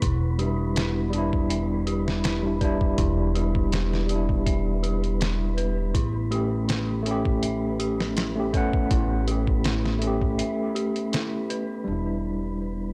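Trip hop at 81 BPM in E dorian with a dark, smoky lean, this excerpt sets a very quiet, shimmering cimbalom phrase that ends by 1.8 s against a lightly overdriven tine electric piano with tremolo and tape echo, an eerie, warbling detuned synth bell playing arpeggios through chorus, a woody pizzicato upright bass, a gritty, pitched-down sampler drum kit with a thumpy kick, and an airy, breathy noise texture in the background, moving from Em7 to A7 before a break at 10.4 s, all in a dry, saturated hardware sound.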